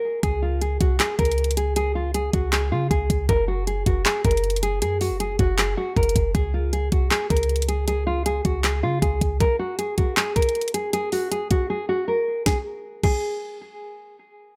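A half-time trap groove at 157 BPM in 4/4 drives this wistful, dreamy hip hop cut in Db major, tuned to A4 = 438 Hz. The electronic trap kit sits up front, its knocking kick, sharp snare, handclaps, hi-hat and crash cymbal roughened by overdrive. Beneath it, a clean 808-style bass supplies deep, boomy sine tones with a fast attack and a dark decay, moving through Db5 and Gb harmony before dropping out at 9.4 seconds. A fingerpicked nylon-string guitar carries the melody from the opening, its full-bodied classical tone close and warm, softened by a low-pass filter and trailed by delay. After a brief silence ending at 12.5 seconds, a new section begins, with the guitar lingering until 13.6 seconds in a dry, present mix.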